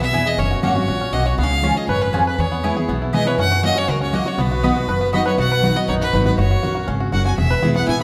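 An up-front, bright fiddle carries the melody in this joyful, rustic bluegrass excerpt, its single bowed line earthy and touched with light vibrato. Beneath it, a full-bodied jumbo steel-string guitar is picked as accompaniment, while a twangy, percussive banjo played with fingerpicks spins arpeggios through the middle of the texture. An upright bass, plucked on steel strings, gives a woody, growly foundation. A mellow, round mandolin adds picked double-string stabs before dropping out at 5.2 seconds, leaving the other four to finish the passage. The same section repeats from 5.4 seconds, with the harmony moving among F#, C#, E and B chords, and the whole ensemble sits in a wet recital-hall reverb with a lingering tail.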